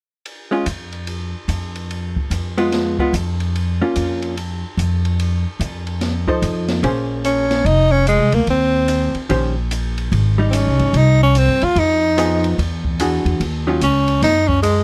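Small-group swing and bop jazz with a smoky, swinging mood, heard as a short cut from a longer piece. The drum kit opens at 0.3 seconds, sitting low in the mix with dark cymbals, a medium-tuned snare, a boomy kick and a rolled-off top across hi-hat, ride, snare and kick. Moments later a vintage hollow-body electric guitar comps with a clean, picked, compressed tone, while a woody, pizzicato upright bass with steel strings stands up front. At 7.3 seconds a clear tenor saxophone enters for the melody, playing solo with light vibrato and a soft attack, close-miked and the most prominent voice. The harmony moves through chords such as Fdim, F7, Bbm9, Abmaj7 and E9; the guitar drops out at 13.8 seconds as the others carry on. The sound is dry and intimate, with detailed close microphones and little room reverb.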